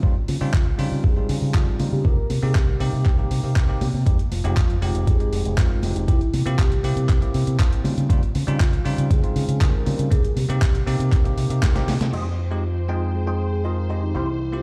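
A sensual, groovy nu-disco cut in F minor at 119 BPM opens with a bell-like tine electric piano, filtered and delayed, over a bright fingered bass with envelope filter and sidechain pumping, joined by a gritty, overdriven electronic kick that sits up front. From 0.3 seconds a round, detuned octave-layered synth lead with chorus, phaser and dub echo floats in the background alongside a dusty sampler-style kit of snare, hi-hat, handclaps and crash, plus ringing high-tuned congas, as the chords move through Dbmaj9#11, Cm7, Fm7 and C7 in a stone-room ambience. After a drum fill, at 12.1 seconds a distant, lush symphonic string section and a clean, scooped envelope-filtered electric guitar riff with a filter sweep arrive on Fm7.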